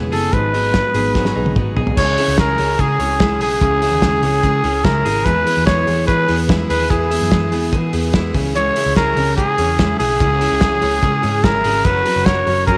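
Restless and wistful, this cut from a longer jangly indie pop piece moves at 146 BPM in C# dorian. A full-bodied steel-string acoustic guitar picks out the accompaniment while a bright, twangy twelve-string electric guitar spins arpeggios over a round, foam-muted vintage bass. A cloth-damped, thuddy drum kit with a fat snare and dark cymbals sits up front and plays a fill from 1.1 to 2.0 seconds, leading into the main section as the chords move from C#m through E to F#. Over the top, a raspy, growling trumpet carries the melody with light vibrato and a slapback echo, all set in a moderate echo chamber reverb.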